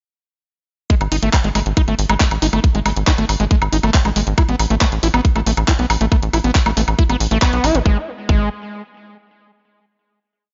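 A dry, dark-topped mix carries this short, hypnotic psychedelic trance piece, whose drop lands at 0.9 seconds with an overdriven four-on-the-floor electronic kick up front, a programmed garage drum kit of handclaps, hi-hats and woodblock, and a screaming, squelchy acid line whose six-step sliding loop drifts against the bar through distortion, chorus, sidechain pumping and digital delay, joined a moment later by a punchy, nasal sequencer bass rolling in sixteenth notes, before a final chord takes over at 7.9 seconds.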